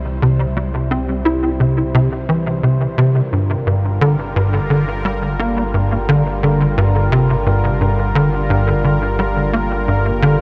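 Cosmic and hypnotic, this ambient, sequencer-driven space music moves at 87 BPM in a straight 4/4, centred on G dorian and drawn from a longer piece. A tight sequencer bass carries the riff from 0.2 seconds, its punchy, dark sawtooth and square-wave tone sitting up front with a filter pluck, ensemble chorus and analog delay. Beneath it, a deep, round sine sub bass holds the low end from the start, mellow and sustained. A sweeping, resonant pad of detuned sawtooth waves sustains bright chords treated with chorus, evolving through a filter swell and fading in over the full 10.4 seconds. The harmony moves from C to Gm7 at 3.0 seconds, and a huge ambient reverb with an 8.4-second decay gives the sound a vast, spacious depth.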